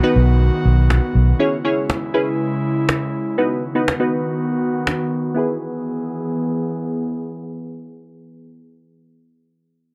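This dance-pop excerpt moves at 121 BPM in E major with a straight 4/4 feel, and its mood is summery and euphoric. A crisp, digital wavetable chord stab carries the accompaniment with a fast-attack filter pluck through a low-pass filter. Beneath it, an airy, breathy pad with a slow attack and long release holds sustained chords, thickened by chorus and a detuned noise layer. A round, punchy, foam-muted electric bass sounds a dark B at the start and stops by 1.3 seconds, while a very quiet electronic downlifter opens the passage and a woody cajon with faint snares plays from 0.9 to 5.0 seconds. The harmony moves from B to C#m and back to B under a filter sweep before arriving on E. The whole recording is dry and close, in a 1970s studio style with little reverb.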